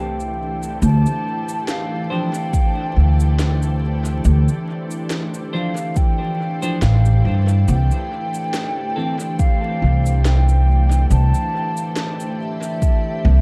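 A slow 70 BPM pulse in 4/4, swung lightly on the sixteenths, carries this deep, spacious ambient dub in D minor. A deep, layered electronic kick sits up front from 2.5 seconds, locking in with the upright bass, whose woody, thumpy pizzicato on gut strings has dominated the low end from the opening, while a faint electronic cabasa and woody, tape-softened snare drift through dub echo in the background. A calm, evolving organ-like pad holds sustained chords through chorus and its own reverb, moving from C6 to a long stretch of Dm7 and back to C6 at 7.7 seconds. Above it, a mellow, hollow concert flute sings a soft melody with vibrato and rolled-off highs, trailed by dub echo. A clean, twangy electric guitar adds picked stabs in the background, bathed in lush chorus and echo, before dropping out at 9.2 seconds. The dark production keeps the room dry and lays a gentle vinyl crackle over this excerpt cut from a longer piece.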